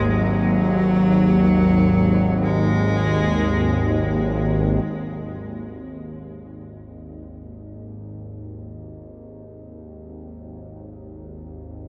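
Drenched in a cavernous cathedral reverb and dark production, this fragment of a longer dark ambient drone piece feels ominous from its first moment. A single bowed cello, biting and bright with light vibrato yet set at a distance, carries the melody in a diffuse haze of delay until 4.2 seconds. Beneath it, a tense, string-like drone of detuned sawtooth tones and a noise layer, with slow attack, vibrato and long release, sustains throughout and fades in from 4.9 seconds to the close.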